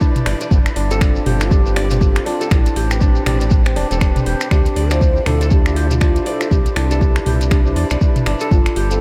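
Afro house with a warm, earthy mood, cut from a longer piece, where a breathy, hollow bass bansuri carries the melody over crisp, ringing kora arpeggios and lightly overdriven tonewheel organ stabs with key click, both pumping against a deep, tape-warm kick up front, while a round, dark analog bass enters at 0.3 seconds alongside an afro-pop kit of finger snaps, metallic hats and toms and a grainy shekere tucked in the background, all set in a small room with diffuse ambient delay on the melodic parts.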